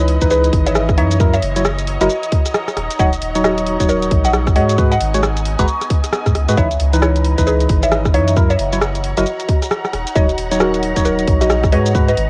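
A woody, FM-toned mallet-like synth pluck with tape echo carries the melody over hollow, up-front organ stabs, a round dub sub bass, a silky phaser-tinged string machine and a lush, bowed symphonic string section, the latter three pumping to the sidechain, before the garage drum kit's bright hats, rim clicks and shaker enter at 0.1 s and a tight electronic kick at 0.2 s, setting a bouncy, moody two-step UK garage groove at 134 BPM in C# dorian that cycles through C#m9, F#7, D#m7 and G#m7 in this home cassette recording cut from a longer piece.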